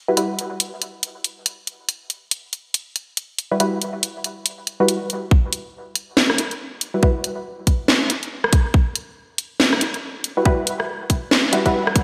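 Deep dubstep at 140 BPM in E minor with a heavy, meditative half-time swing, where muted, detuned sawtooth chord stabs soaked in chorus and dub echo flicker over an Emadd9 color alongside a cracking, gated-reverb garage kit of hi-hat, rim click and snare, until a tight, tape-warm electronic kick enters at 5.3 seconds to drive the build-up, all set in a lush hall with bright 1980s-style digital sheen.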